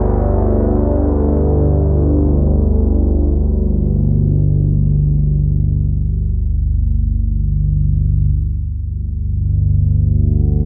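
Cavernous and dark, this brief ambient fragment drifts in free time, cut from a longer piece. A solo analog drone sits up front, holding a low G5 chord that spans G1 to D2, its wave-folded blend of sawtooth, pulse and sine tones shifting under pulse-width modulation. The sound blooms with a slow attack, sustains, and fades through a long release, while chorus and delay give the drone a thick, evolving body. A huge, wet reverb with a 7.6-second decay surrounds it, and the top end is rolled off above 7.5 kHz, keeping the tone murky and subdued. At 8.3 s the piece moves into a new section that carries through to the end at 10.7 s.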